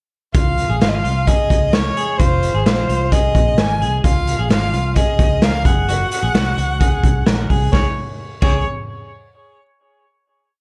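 Breezy and bright, this short jangly indie pop piece moves over a straight 4/4 pulse, its raw garage drum kit up front with a boomy kick, a gritty, saturated small-room sound and a brisk indie backbeat, while a vintage foam-muted fingered bass plays a round, punchy, melodic line with slides. An electric guitar through a small old amp rings out a twangy, slightly broken-up picked figure, and a distant, focused violin carries a motif-based melody in call phrases with vibrato. The dark production and light reverb wrap the verse before a final Db5 chord arrives around 7.7 seconds, and the parts stop near 8.6 seconds as it closes the piece.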